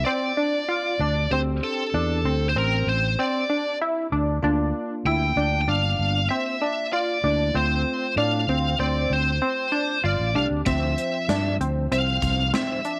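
Driving and intricate, this progressive instrumental excerpt in D minor moves at 96 BPM in a straight 5/4, with a bluesy, distorted lead guitar carrying the melody up front over a growly fretless bass, a detuned sawtooth synth spinning tight, warbling arpeggios through chorus, and a clean, bell-like tine electric piano tucked in the background, all in light small-room ambience, until a punchy, gated 80s drum kit joins at 10.7 seconds as the chords cycle from Dm7 through Csus2, Bb and F/D back to Dm7.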